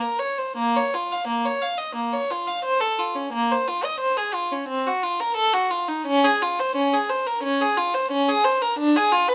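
A lone violin, played close and up front in period style, opens this grave, flowing fragment of a baroque-style suite movement, which lasts 9.3 seconds and is cut from a longer piece. The gut-string tone is nasal and reedy, with an airy bow, and the player moves freely in a rubato 4/4 across a range from Bb3 to F5. A light reverb gives the single bowed line a touch of space.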